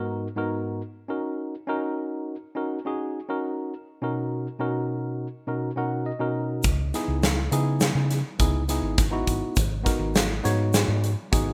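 A driving, bright progressive instrumental in 5/4, cut from a longer piece, opens with a worn, slightly out-of-tune, barky tine electric piano, lightly overdriven through a combo amp and up front, moving through G#m7, D#m7 and Bmaj7 chords and playing a fill at 5.5 seconds before a dark, round hollow-body fingered bass, a big acoustic rock drum kit with a tight kick and medium-tuned snare, and a very quiet, grainy egg shaker all enter at 6.6 seconds, the whole captured as a rough home demo in a small room with light reverb.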